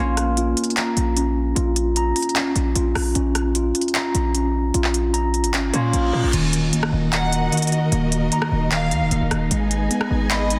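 Menacing and brooding, this half-time trap excerpt at 151 BPM in Eb minor sets a mellow tine electric piano's arpeggios with tape echo over a punchy, heavy 808-style bass, crisp electronic trap drums with handclaps, rim clicks and a crash, and a ringing fingerpicked concert harp, before a reverse cymbal and impact in the background usher in a lush bowed string section at 6.3 seconds, joined at 7.1 seconds by a rich violin section carrying a second line through tape echo, all within a dense, heavily limited modern master.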